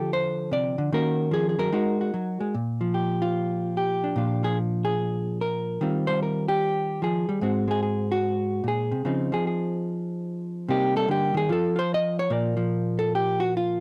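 A lone hollow-body electric jazz guitar opens this short solo jazz excerpt, its clean, dark, picked tone sitting up front in a dry, close 1970s-style studio sound with only light reverb. The mood is swinging and sophisticated, moving at 147 BPM in 4/4 with a 66% swing on the eighth notes, in Bb major. The guitar ranges from Ab2 up to Eb5, first passing through Dm7, Ebm7 and Absus2 chords before settling onto Bb5 at 2.5 seconds, where its solo proper begins. From there the harmony travels through Bb7, Eb69, Ab7, Dbmaj9 and Cm7, moves into a chordless passage at 11.5 seconds, then resolves onto Bb6. The clip is cut from a longer piece and ends at 13.8 seconds.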